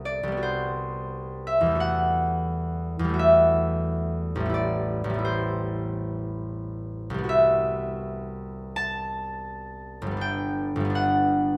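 A close, detailed recording places a bright, ringing concert harp up front within a moderate concert hall reverb, its fingerpicked notes reaching from G1 up to A5. This graceful, dreamy classical solo moves in a rubato 4/4 between roughly 72 and 90 BPM, drifting through lush chords from Cmaj7#11 to Emadd9 and Am9 before returning to Cmaj7#11 and settling on Gmaj7 at 10.2 seconds. The 11.6-second passage is cut from a longer piece.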